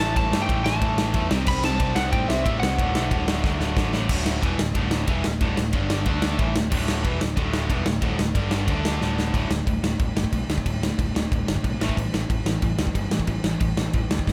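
A light reverb surrounds a big, natural-sounding acoustic drum kit placed up front in this rebellious, energetic punk rock excerpt, its punchy kick, medium-tuned snare, crash and ride cymbals driving a straight 4/4 at 183 BPM. Two picked guitars, one crunchy and overdriven, the other distorted, sit in the background playing riffs through the whole passage. A punchy, growly, amped electric bass with a warm tone anchors the low end. A bright, twangy lead guitar, compressed and slightly broken-up, plays a short melody at the start before stopping at 3.7 s. The harmony moves through A5, C and D before settling into D5 and G5 shapes, and then A5 later, with drum fills marking the section changes around 3.4 s and 9.0 s.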